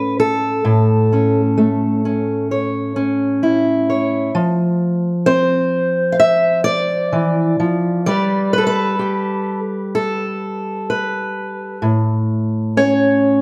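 A straight, unhurried 4/4 pulse at 64 BPM carries this melancholic, intimate folk fragment of about 13.4 seconds, where a solo fingerpicked steel-string acoustic guitar, tuned to A4 = 439 Hz and sitting up front with a warm concert tone, spans A2 to F5 and moves from A through F5 at 4.3 seconds and Gadd9 at 8.1 seconds before returning to A, all wrapped in a moderate recital-hall reverb.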